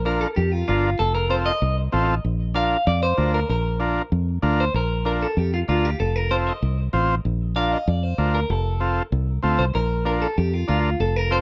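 A straight 4/4 cumbia pulse drives this joyful, festive Latin cut at a brisk 192 BPM, set in B-flat major and tuned slightly under standard pitch at A4 = 439 Hz. A fingered electric bass sits up front with a punchy, foam-muted tone, holding the low end throughout. A clean electric guitar carries the melody with a bright, twangy picked sound bathed in spring reverb. An overdriven combo organ joins at 0.1 s as accompaniment, its vintage, buzzy voice colored by light vibrato. The harmony moves between B-flat and F7, with a plain F chord near the end, and a new section arrives at 4.7 s. The dry, close studio sound has a 1970s character with only light room reverb, and the clip is cut from a longer piece.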